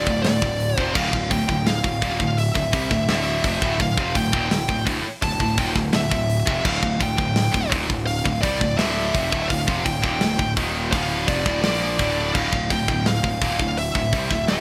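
A bright 1980s-style digital production with light reverb frames this aggressive, epic heavy metal cut, taken from a longer piece and resting on a single D minor chord throughout. Up front, a bright, double-tracked high-gain guitar drives the low riff, while a dark, distorted lead guitar carries the melody higher up and a growly fuzz bass adds overdriven weight underneath. The tight, acoustic metal kit, with its bright crash and hi-hat, medium-tuned snare and tight kick, enters at 0.1 seconds, sitting up front in a studio room with gated reverb.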